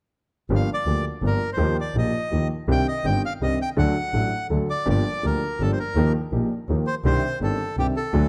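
Tense and dramatic, this short tango excerpt moves at 165 BPM in 3/4, yet its rubato feel lets the time stretch and pull in G minor. A clear, woody upright piano carries the accompaniment from 0.5 seconds, spanning a broad range from deep in the bass clef up to A4, while a single bowed double bass with a smooth top and vibrato anchors the low end. At 0.6 seconds the bandoneon takes the melody, its reedy, full tone sitting close-miked, dry and up front between G4 and G5. The harmony cycles through Gm7, Ebadd9, Cmadd9 and D, then returns to Gm7 at 4.9 seconds to begin a second section that moves again through Ebadd9 and Cmadd9. Light reverb and a dark production give the whole trio a shadowy, intimate atmosphere, and the passage breaks off at 8.3 seconds as part of a longer piece.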